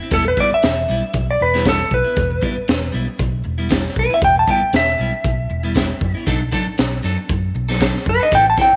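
Straight-eighth soul blues at 117 BPM in 4/4 with a light 16th-note swing, set in E minor and carrying a soulful, smoky mood. This short section cut from a longer piece rests on an E minor chord before moving to B7#9 at 6.3 seconds. A clean lap steel guitar carries the melody up front, its dark, fingered slide tone colored by a slapback echo. Beneath it, a clean, picked electric guitar plays stabs in a softer place in the mix, touched with subtle chorus, while a vintage muted fingered bass gives a round, foam-muted, amped low end. The crunchy breakbeat kit of hi-hat, kick and snare sits close and saturated, with a punchy kick, a high-tuned snare and a gritty, rolled-off top that suggests a small room. Light studio reverb rounds out the sound.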